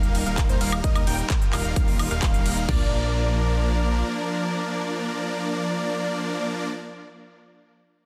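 This short cut from a festival progressive house track drives a straight 4/4 at 130 BPM in Bb major, opening straight into the drop, where a punchy, up-front kick joins crash cymbal and toms from 0.4 s while handclaps, crisp hi-hat, ride cymbal and woodblock tick along until 2.7 s. The mood is triumphant and euphoric, carried by huge, lush supersaw chords playing a brilliant, detuned sawtooth riff with an airy noise layer and digital delay, pumping against the sidechain. Beneath them a fat, thick analog bass holds sustained sawtooth notes with a filter sweep until 4.0 s, its detuned tone pumping too. In the background a catchy plucky unison lead spins arpeggios high up, blending sawtooth and sine with vibrato, a moving notch and delay, while a rich chamber string section with a reedy, gut-string period tone sustains bowed chords. The harmony moves from Eb to Bb at 2.7 s as the drums fall away, and light reverb with digital ambience sits around a dense, heavily limited modern master.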